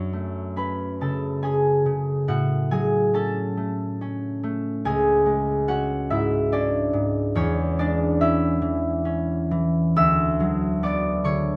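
A light reverb surrounds a bright, ringing concert harp that sits up front in this short cut from a longer classical solo harp piece, gentle and mysterious in F# minor. The fingerpicked acoustic harp plays alone throughout, spanning C#2 to E6 at a rubato 71 BPM in 3/4, tuned to A4 = 441 Hz. Its harmony moves from F#m through C#m and C#m/E, arriving on Bm/D at 10.0 seconds.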